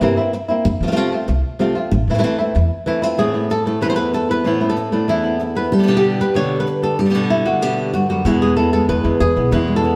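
In a straight four-beat feel, this dramatic, intense flamenco excerpt sets an up-front, boxy fingerpicked flamenco guitar melody over a thumpy, woody pizzicato upright bass, which drops out at 2.7 seconds shortly before a bright second fingerpicked flamenco guitar with fresh strings enters at 3.2 seconds with stabs, and the bass returns at 8.2 seconds, all heard as a band playing live in one wet stone room.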